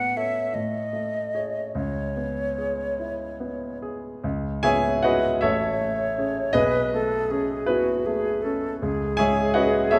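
Mysterious and wistful, this impressionist classical excerpt for flute and grand piano drifts in a rubato 6/8 around 48-54 BPM in C# minor, with a hollow, pure, close-miked concert flute singing the melody up front with vibrato and tongued notes over a polished, present grand piano whose short-sustain accompaniment moves through chords such as Amaj7, C#m9 and B9, all set in the lingering reverb of a concert hall.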